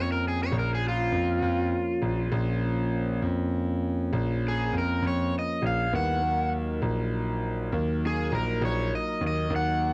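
From the first second a crunchy, overdriven electric guitar sings a smoky, mournful melody up front over sustained tonewheel organ chords turning through a slow rotary speaker and a brilliant concert grand piano holding down the deep bass, all in a slow 12/8 blues at 67 BPM in Bb minor that moves from Bbm to Ebm at 5.9 seconds, captured dry and close like a 1970s studio recording in this short cut from a longer piece.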